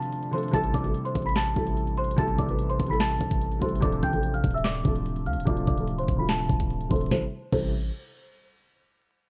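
This menacing, eerie trap excerpt at 146 BPM moves in a half-time feel in A minor. It opens on a brief break where a bell-like, slightly out-of-tune celesta melody and a felt-muted upright piano, both low-pass filtered, sit over a barely audible, detuned dark pad and an overdriven trap kit with knocking kick, sharp snare, crisp hats, handclaps and crash. At 0.5 seconds the pad stops and a punchy, heavy 808-style bass arrives with decaying notes, while a filter sweep runs through the section as the harmony shifts between Am7 and Dm7, all under worn cassette warble, vinyl crackle and pitch drift with little reverb, the piano's audible action noise keeping it intimate and up front.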